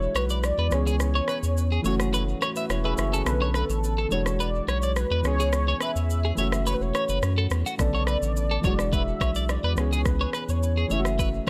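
This afrobeats excerpt moves at 106 BPM in 4/4 with a straight, hypnotic and mellow feel, centred on F# minor. A velvety synth lead carries the melody, its detuned sawtooth tone colored by chorus, vibrato and tape echo. Round, warbling electric-piano-like synth keys play the accompaniment with a vintage touch and a filter sweep. A thick, saturated sub bass sits up front, while a clean, compressed twelve-string electric guitar enters at 0.2 s with a picked riff treated with tremolo and tape echo. An electronic afro-pop drum kit of deep kick, rim click and shaker joins at the same moment, with a break running to 7.8 s. The dry, echo-heavy mix cycles through E9, C#m7, F#m7 and Bm9.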